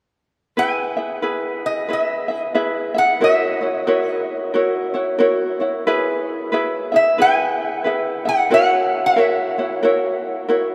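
From 0.6 s, a metallic, nasal lap resonator guitar carries a slide melody played with fingerpicks over a mellow, lightly fingerpicked ukulele, both up front in this languid, relaxed Hawaiian passage cut from a longer piece, swinging at 91 BPM in E major as the chords move from E to F#7 twice, the pair bathed in a vast cathedral reverb that lets every note echo long.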